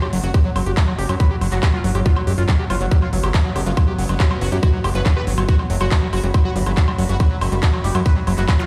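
Played through a big sound system in a bare stone room, with little reverb of its own, this intense, driving psychedelic trance excerpt runs at 140 BPM in a straight 4/4 over a single F#5 chord. A tight, up-front electronic kick enters at 0.3 s, layered with a big-room dance kit of crisp hi-hats, handclaps and woodblock, its overdrive and large-room re-recording giving it grit. A fat, nasal analog bass arrives at 0.1 s and sits forward in the mix, saturated and detuned with a plucky filter. Further back, a screaming acid riff squelches with resonant filter sweeps, distortion, chorus, dub echo and sidechain pumping, while a bold, detuned unison lead carries the melody with vibrato, phaser, delay and its own pumping. Beneath them an evolving wavetable pad morphs very quietly, an airy, breathy pad adds soft, chorused texture with a moving notch, and a brief electronic zap lands at 8.6 s.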